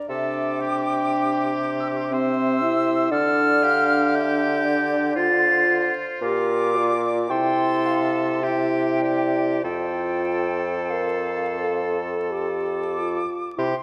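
A pure-toned silver concert flute carries the melody high above the ensemble, its crisp attack and expressive vibrato sounding slightly distant. This is a serene, slow romantic movement for wind quintet in 3/4, taken with a flexible, rubato feel, and it is cut from a longer piece. A bright oboe with light vibrato traces a second line beneath it. A mellow, smooth-topped clarinet sits in the background, and a dark French horn with a soft attack fills out the accompaniment. Up front, a clear, vintage-sounding bassoon anchors the bass as the harmony moves from Cadd9 through Dm, Bb, C6 and C before settling on F at 9.6 seconds. A generous scoring-stage reverb and a warm production, touched by vinyl crackle and a faint mains hum, give the performance an aged, intimate glow.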